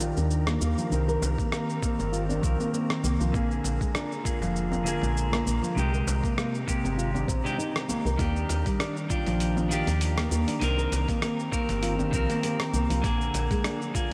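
This earthy, peaceful organic downtempo excerpt at 99 BPM, gently swung on the 16ths, opens with thumb-plucked nylon-string guitar arpeggios through digital delay, a dark, picked clean electric guitar under a filter sweep with slapback echo and sidechain pumping, a breathy, chorused pad, a woody, round FM bass, a gritty, overdriven sampler-style kit of hi-hat, rim click and shaker, a very quiet, deep djembe and a wind-like tuned noise texture in the background, before a thumpy electronic kick joins at 1.4 seconds, the harmony moving through Ebmaj7, Cm7, Bb7 and Abmaj7 in a lush hall that gives a big arena sound.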